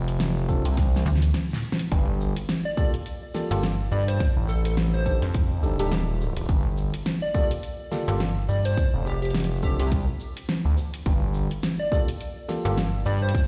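Glitch hop with a swaggering, gritty strut, this short cut from a longer piece rides a swung groove in 4/4. A gritty, nasal synth bass with a distorted, wave-folded edge anchors the low end from the start, while a punchy, up-front electronic kick and a pop kit with a fat snare and metallic hats drive the beat alongside a grainy egg shaker. A snappy, digital FM bass with a metallic attack darts in at 1.1 seconds and returns in brief bursts, and a drum fill leads into a short break just before the chords settle into Gm9. A barky, clean electric piano punctuates the groove with stabs that pump against the kick and trail off in delay. At 2.7 seconds a catchy, full-bodied unison lead enters with a detuned, evolving tone shaped by a filter sweep, its delayed phrases sitting over a cycle of Dm7, Gm9 and F13. The whole mix carries the stony reverb of a big sound system playing in a bare room.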